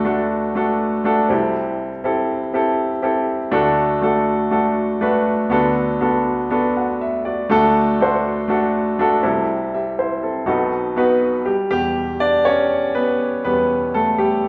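A clear, polished baby grand piano plays alone from the start in this anthemic, warm pop excerpt at 121 BPM in a straight 4/4, sitting present and up front in a wet large-room reverb as it moves through D, C6 and Bm7/D, returns to D and C6, reaches B7 and turns to Em at 11.5 seconds for a short new section that runs to 14.5 seconds.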